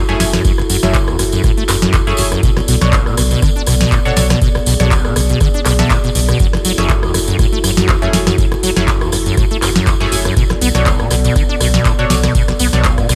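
A squelchy, resonant sawtooth acid bass riff leads this trippy, gritty acid house excerpt, colored by ensemble chorus and dub echo above a round sine sub bass with sidechain pumping and a deep, tape-warm electronic kick. A booming analog drum machine adds a tonal snare, handclaps, rim clicks and metallic hi-hats in a short room, joined by a jingly acoustic tambourine and a light 16th-note swing. Underneath, a dark, detuned, nasal pad sustains F#m7 and Bm7 chords with slow attack and pumping, while bright band-passed chord stabs flicker through chorus, phaser and dub echo in a mostly dry mix.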